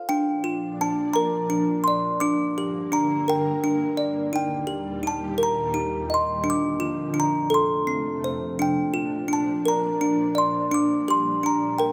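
A delicate, tinkling music box carries the melody up front in this tender, innocent children's lullaby in 6/8, while an evolving, detuned wavetable pad with chorus, tremolo and its own reverb enters at 0.4 s to hold soft sustained chords beneath it, all set in a wet recital hall in this fragment cut from a longer piece.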